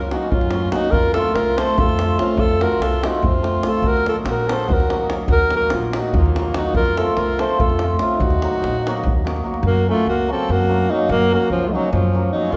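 Shimmering, hammered cimbalom chords and a woody, thumpy pizzicato upright bass open this fiery Balkan wedding-band excerpt, with the bass's steel strings giving it a bright edge. A moment later the davul enters with a deep, acoustic beat that has a small-room character, driving the lopsided 7/8 metre with a straight feel. Up front, a mellow alto saxophone carries the virtuosic melody in a classical style, its smooth top and vibrato singing over the ringing accompaniment. A soprano saxophone, also mellow and classical in approach, weaves a second line alongside it at a lower level. The davul drops out at 9.6 seconds as the opening section returns, and the saxophones, cimbalom and bass carry on through to the cut at 12.6 seconds. The whole band sits in a resonant hall with a lush, reverberant tail.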